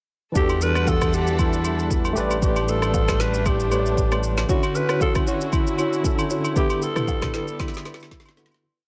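At 116 BPM in 4/4 with a light swing on the sixteenths, this complete amapiano piece settles into a late-night, soulful groove in E dorian, driven by an up-front deep house drum kit with a deep kick, woody snare, steady shaker, syncopated rim clicks and toms, while agogo bells and woodblock tap out a timeline beneath. A fat, nasal analog bass holds sustained notes with a plucky filter until 4.5 s, when a buzzing marimba with medium mallets enters with short syncopated stabs from the background. A barky tine electric piano, run through a combo amp with medium tremolo, plays held chords in spread voicings with grace notes, and a dark chamber string section lays a soft, sul tasto pad that pumps under sidechain. Over this a breathy, raspy alto saxophone carries a solo hook-based melody with vibrato and delay. The harmony moves from Em11 through A9sus4 and Dmaj9 to G69/D inside a small room ambience, and the piece fades out from 6.6 s as a drum fill closes it from 7.6 s.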